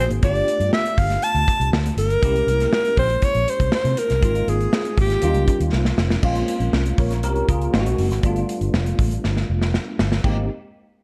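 Glossy and breezy, this short excerpt of polished 1980s jazz-funk pop moves at 120 BPM in a straight 4/4. A breathy alto saxophone carries the melody up front, close-miked and intimate, with subtone, vibrato, scooped notes and a soft attack, before it falls silent at 5.7 seconds. Underneath, a worn tine electric piano, slightly out of tune and heard through built-in speakers, plays accompaniment with an ensemble chorus, while a vintage muted fingered electric bass sounds round, punchy and foam-muted. The modern studio drum kit, with a tight kick, medium-tuned snare, dark cymbals, hi-hat and crash, has a rolled-off top and gated reverb, and drum fills arrive at 5.7 and 9.2 seconds. The harmony drifts through rich extended chords such as G9, C7b9b13 and Ab69, shifting into a second section at 6.2 seconds on Bbm7 and settling on Abmaj9, all in a light small-room ambience.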